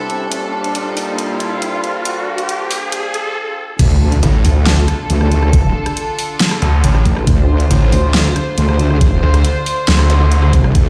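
Chaotic and aggressive, this heavy wobble dubstep cut runs at 138 BPM in a half-time feel in D minor, opening on a floating, bowed string section and a warbling, lo-fi tape-like pad over a background riser as an overdriven dubstep kit with a huge snare plays. After a brief stop, the drop hits at 3.8 seconds with an impact, a knocking electronic kick and an up-front, resonant wobble bass, joined at 4.2 seconds by a snarling, bright, distorted saw bass, with a zap sound effect near the end. The mix sounds as if blasted through a big sound system in a bare stone room.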